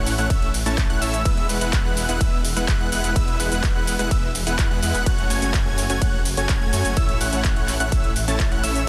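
A huge, bright supersaw riff opens this euphoric, anthemic festival progressive house passage, joined from the start by high arpeggios on a bold unison lead with subtle chorus and vibrato and a thick, beating detuned saw bass, all three pumping with sidechain and the two leads trailed by dub echo. A punchy electronic kick sits up front in the mix, while a big-room kit of cabasa, handclaps, metallic hi-hat and ride cymbal is overdriven and set in studio ambience, the chords moving from A through E and F#m back to A. A very quiet electronic swell enters at 8.2 seconds at the end of this short cut, and the whole is a dense, heavily limited modern master with little reverb.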